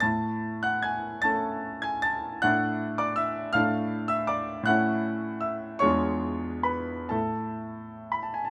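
A bright concert grand piano opens alone, spanning from a deep bass up into its glittering top register in this brief romantic character piece. The mood is hopeful and warm, carried by a lilting triple-feel metre and a freely breathing rubato that lets each phrase stretch and settle. The harmony moves from its home chord through a major and then a minor shading over the same bass, returns home at 4.7 seconds, and reaches a tense dominant chord at 5.8 seconds before the chords fall away at 7.1 seconds. The piano tone is brilliant and polished, with short sustain that keeps the textures clear. Close, detailed miking places the instrument up front and present, wrapped in a light reverb. The passage is a fragment cut from a longer piece.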